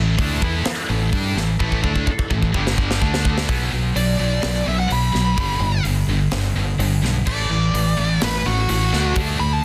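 Hard rock in B minor at 127 BPM in a straight 4/4, this menacing, aggressive excerpt is cut from a longer piece and lasts under ten seconds. Three picked, high-gain rhythm guitars stack up the riff: a bright, scooped guitar, a heavier distorted one that stays in the background, and a very quiet double-tracked part that drops out at 3.5 s. Underneath, a lightly overdriven tonewheel organ holds full sustained chords through chorus vibrato and a slow rotary speaker for the first 3.5 s, while a fingered electric bass plays up front with a direct, warm tone. A tight, polished, airy metal drum kit with bright cymbals, a medium-tuned snare and a tight kick drives the part, and a fill runs from 1.6 s into the change. From 4.0 s a high-gain lead guitar takes the solo up front, its warm distorted tone ranging from F#4 to B5 over a Bm, G, A5 and D5 progression. Light reverb and small room ambience frame a dense, heavily limited modern master.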